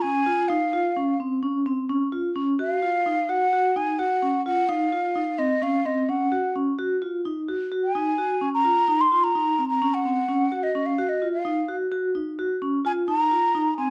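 A mellow, hollow concert flute melody and ringing, metallic vibraphone arpeggios played with medium hard mallets and motor vibrato open this tense, intricate progressive instrumental excerpt in 9/8 at 257 BPM in Eb dorian, moving from a Db chord to Ebm7 as the airy, plate-reverbed flute takes a solo from 2.6 s, all colored by the warbly pitch drift of worn cassette tape and a moderate studio reverb.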